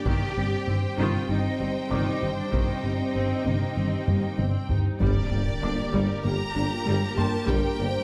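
Heavy-stick taiko drums drive this brooding, futuristic excerpt of hybrid orchestral and electronic film score, joined by a smooth gliding synth bass riff, a tine-like thumb-piano-style synth pluck playing arpeggios, and a mellow analog pad with chorus alongside sustained, dark French horn chords. A lush violin section with vibrato carries the melody over a distant second violin line, intense violas, cellos and focused double basses, while a soft, felt-muted upright piano with tape echo adds boxy texture from 1.9 s. After a drum fill, a huge, bright impact lands at 5.0 s as a roomy tuba enters on the bass, the whole ensemble sitting in a moderate scoring-stage reverb.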